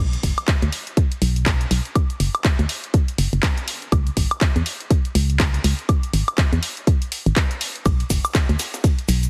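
A dry, heavily compressed radio-style mix carries this soulful, energetic piano house excerpt in B dorian at 122 BPM, swung on the 16ths, where a hollow, dark, organ-like FM bass pumps up front beneath a punchy, layered electronic kick and a tape-warm analog drum machine of cabasa, handclaps, hi-hat and woodblock heard in a large room, before a gritty, high-passed breakbeat sampler kit of hi-hat, ride and snare slips into the background at 7.9 seconds.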